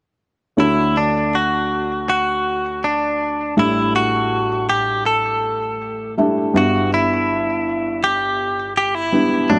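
Set in a light small-room reverb, this short cut from a tender, hopeful pop ballad in D major at 81 BPM pairs a twangy, compressed clean electric guitar carrying the picked melody through a delay with an intimate baby grand piano whose audible action noise sits up front beneath it, both playing from 0.6 to 9.6 seconds over Dmaj7, A7sus4 and Em7/G.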